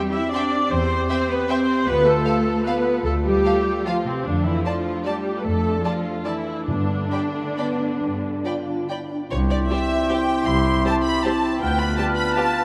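A smooth, close violin section carries the melody of this sweeping, elegant orchestral ballroom waltz in C major, its bowed line singing with vibrato above the ensemble. Set in 3/4 with a rubato feel between 130 and 168 BPM, the music rests on a lush string body: an up-front viola section in accompaniment, a second violin line in the background, and cellos and double basses sharing the bass, the basses sounding focused. A dark, distant French horn section holds sustained chords beneath, while timpani struck with hard mallets add a brief, articulate accent at 6.7 seconds as the harmony arrives on G. At 9.3 seconds the passage moves into a new section, where a pure, hollow flute and an oboe join as background second lines, followed by a mellow bassoon in accompaniment at 9.7 seconds. The orchestra is heard in a vast, echoing cathedral reverb, and this excerpt is cut from a longer piece.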